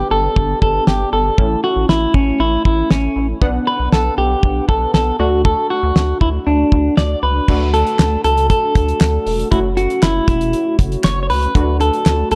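A dry, gritty hardware recording carries this wistful yet bright synth-pop excerpt at 118 BPM in D major, where a twangy, clean electric guitar sings the melody through spring reverb over a nasal, funky polysynth comp with chorus, a rubbery square-wave bass with transformer saturation, and an up-front, damped 70s drum kit with a fat snare, tight kick, handclaps and crash that joins at 0.4 s, the chords moving through Gadd9, A, Bm and D before turning to F#m7 at 9.5 s.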